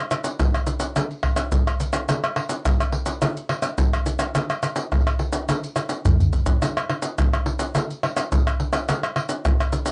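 Playful and sunny, this short samba cut from a longer piece moves in a straight 4/4 feel. A percussion group of maracas, pandeiro, tamborim and surdo plays throughout, from 0.1 to 9.9 seconds, with the deep surdo anchoring the bottom. The acoustic percussion sits up front, its soft hands given a compressed, saturated character. A drum fill between 5.8 and 6.6 seconds briefly breaks the flow before the groove carries on. The sound comes from a home cassette recording in a wet booth with a short decay, and its top end is dulled, giving the whole clip a homespun, intimate charm.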